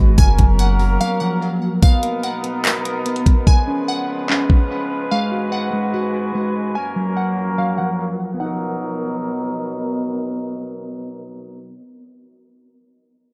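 Blissful and dreamy, this atmospheric cloud-rap fragment of a longer hip hop piece moves at 146 BPM in 4/4 with a half-time feel, set in B lydian and tuned to A4 = 443 Hz. A mellow woodwind section holds tight, vibrato-tinged chords with a sidechain pumping effect, while a dark, clean, fingered electric guitar plays arpeggios through delay and a breathy, wind-like noise texture drifts in the background with its own reverb. A glassy, crystalline wavetable pluck carries the melody with chorus and delay, over a round, deep 808-style bass that sits up front only at the very start. An electronic R&B drum kit with a knocking kick, hi-hat and handclaps drives the opening until 4.6 seconds, pausing for a brief break from 1.0 to 1.8 seconds, with a filter sweep running from 1.8 to 8.4 seconds. The harmony moves through F#maj7, Bmaj7, C#7 and G#m7 before settling back on Bmaj7, all wrapped in a dark, low-passed production with light digital ambience.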